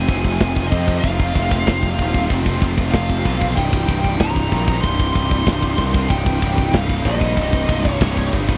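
A straight 4/4 pulse from a tight, up-front metal drum kit with crash, ride, snare and kick drives this dark, heavy metal excerpt, where a growly, punchy fuzz bass sits up front beneath bright background riffs from an overdriven electric guitar, a high-gain distorted guitar and a very quiet, double-tracked heavy guitar, while a shadowy high-gain lead guitar carries the melody over a shift from Fm to Cm at 3.6 seconds, all captured in a dry, close 1970s-style studio sound.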